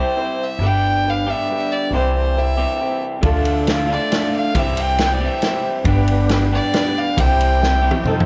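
A light reverb and the warble of worn old cassette tape, its pitch drifting, color this short, hopeful folk rock and heartland rock passage at 137 BPM in a straight 3/4. A rich, nasal fiddle carries the melody up front with light vibrato and an airy, earthy bow. Beneath it, a boxy, picked ladder-braced acoustic guitar sits in the background while an electric guitar through a small old amp plays a dark, slightly broken-up, compressed riff. A woody pizzicato upright bass joins at 0.6 seconds, and at 3.2 seconds a natural country drum kit with a punchy kick and medium-tuned snare arrives alongside a very quiet, lightly overdriven tonewheel organ holding sustained chords through a slow rotary speaker with key click. The harmony moves through C, G and D minor, and a drum fill begins at 7.6 seconds as the passage ends.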